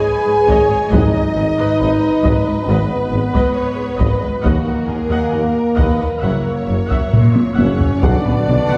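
This excerpt of an epic, relentless cinematic orchestral score opens with violins, violas and a French horn section sounding together at 68 BPM in G# minor. The horns stand up front with a mellow, roomy tone on sustained chords, while a distant studio violin section carries the expressive, vibrato-laden melody over a clear, intense second violin line and focused, close violas. Moments later a lush cello section, tuba and double basses fill out the low end from the background, and hard-stick taiko drums drive the music from 0.5 seconds, joined briefly by hard-mallet timpani on G#2. The harmony moves from C#sus2 over G# through G#m, D#m and F#7 before landing on Bm, with a drum fill from 7.1 seconds leading into that final change. Near the close a very quiet trombone section and a warm woodwind section add sustained chords, all set in a reverberant scoring-stage space heard from further back in the room.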